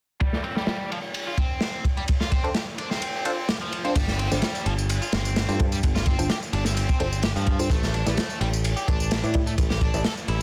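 Breakbeat with a raw, swaggering, swung feel, opening on a crunchy, saturated acoustic kit with dark cymbals and a tight kick, alongside a biting, double-tracked overdriven guitar riff with dub echo, both running through filter sweeps until the kick drops out briefly before 4.0 seconds. A nasal, detuned, band-passed synth chord stab with phaser and dub echo arrives at 2.4 seconds, and at 4.0 seconds a growly, punchy picked electric bass and an analog electronic tambourine join as the stab takes its own filter sweep. The harmony moves from G7sus4 to A7sus4 at 7.7 seconds under light reverb and a dense, heavily limited modern master, in a fragment cut from a longer piece.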